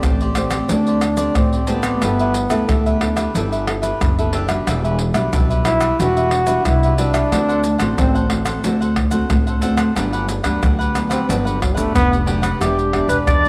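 Nostalgic and bittersweet, this samba and choro excerpt features a warm trombone solo, its soft attack, scooped notes and light vibrato carrying a jazz-style line over a crisp, picked cavaquinho, a dark, thumb-plucked nylon-string guitar set in the background, and a woody, growly pizzicato upright bass. Up front, a compressed, saturated percussion group of egg shaker, deep surdo, pandeiro and tamborim drives the groove, all within a moderate plate reverb. At 12.6 s a clear, distant, classical-style clarinet enters with slapback echo just as the passage is cut off.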